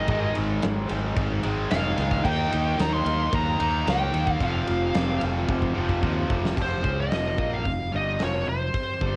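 This short cut from a longer hard rock piece in F minor opens at once with a high-gain lead guitar carrying the melody up front, distorted and coated in tape echo, over a pair of double-tracked picked rhythm guitars playing a riff. The mood is aggressive and heavy at 111 BPM in a straight 4/4, moving through Ab5, Eb and F5 chords. A growly, bright fingered electric bass sits forward in the mix. A big acoustic rock kit, dark and smooth with a punchy kick, fat snare and bright cymbals, enters a moment later and fills from 5.5 seconds. Underneath it all, a very quiet hollow pad holds mellow, flute-like chords with a soft attack, chorus and a long release. At 6.6 seconds the brighter background guitar drops out as a new section begins, leaving the warm overdriven guitar, bass, drums and lead to carry on in a light room ambience with the character of a home cassette recording.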